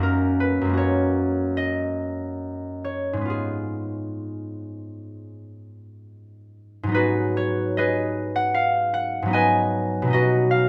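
This classical solo harp piece, cut from a longer work, moves at a rubato 64-80 BPM in 4/4 and G# dorian, with a wistful, gentle mood. A single concert harp carries everything from 0.0 to 10.7 seconds, its acoustic, fingerpicked tone sounding ringing and up front across a range from F#2 to G#5, tuned to A4 = 441 Hz. Light reverb surrounds the instrument as the harmony drifts from F#add9 through G#m6 and G#m7 before settling on B.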